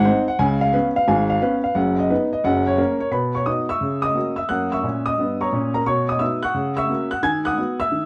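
A woody, boxy, intimate upright piano plays solo and up front, its action noise audible, in this swinging, exuberant stride jazz clip of 8.1 seconds cut from a longer piece, set in a moderate studio ambience with a dark, warm production.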